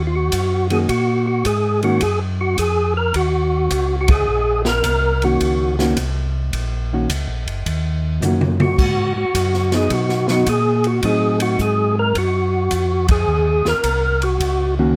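Bluesy and late-night, this soul jazz organ trio excerpt swings at 107 BPM in Eb dorian, with a fat, lightly overdriven tonewheel organ carrying the melody through slow rotary speaker and chorus vibrato, a round, dark organ bass beneath it, a hollow-body jazz guitar adding clean, fingered accompaniment from 0.7 seconds, and an airy, polished big-band drum kit with a punchy kick contributing a fill around 8.2 seconds, as band accents land at 4.0 and 13.0 seconds over a progression from Ebm7 through Abm7 and Adim7 back to Ebm7, all in light reverb.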